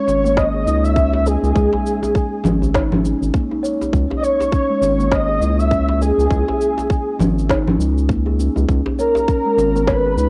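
Hypnotic and earthy, this organic downtempo fragment from a longer piece moves at 101 BPM with swung sixteenths, drifting from an open start to G#sus4 at 3.9 seconds and Bmaj7(no3) at 8.7 seconds. A breathy, flute-like synth lead carries the melody up front through ensemble chorus, cassette tape and analog delay, while a woody, thumb-plucked kalimba rings out arpeggios through tape echo over a round, deep analog bass. Overdriven electronic cabasa, snare and congas with a tight electronic kick sit up front, joined by a cracking, hard-handed djembe, all captured as a home cassette recording with light reverb.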